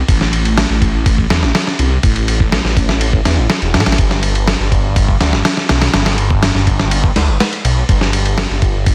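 A straight 4/4 breakbeat groove at 123 BPM drives this energetic, raw excerpt, where a swirling, thick, saturated detuned saw bass with a phaser running from E1 to A2 opens from the start, joined at 0.1 seconds by a gritty, thumpy sampler-style soul drum kit of kick, medium-tuned snare and ride cymbal that sits up front in studio reverb, all under a dense, heavily limited modern master with vinyl crackle and digital ambience.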